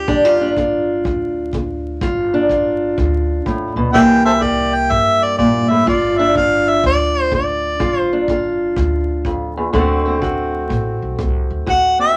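A boxy fingerpicked parlour acoustic guitar and a woody, thumpy pizzicato upright bass on gut strings open this soulful, gritty swung country blues at 124 BPM, with a brushed, punchy kick sitting in the background. A warm harmonica plays up front in a jazzy style, with light vibrato, tongue slaps and scooped notes, taking its main phrase from 3.9 to 8.3 seconds over a blues progression that moves from G7 to C7, back to G5 and then to D7. Vinyl crackle and a small room's moderate reverb give this short cut from a longer piece an aged, intimate character.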